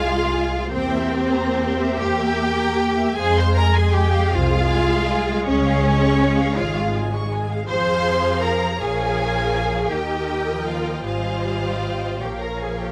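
Elegiac and yearning, this slow, romantic string-orchestra movement in F minor and 6/8 drifts with rubato at roughly 46-55 BPM, taken from a longer piece and heard for 12.9 seconds. One violin section sings the expressive melody with vibrato, a soft attack and a smooth top, while a second violin line glides with portamento and the violas supply a lush, distant accompaniment. Beneath them, the cellos sit up front with a rich, even tone, and the double basses add a smooth foundation with light vibrato, all captured by close, detailed microphones in a dry acoustic as the harmony moves from Fm through Db and Bbm7 toward Abmaj7 and Bbm.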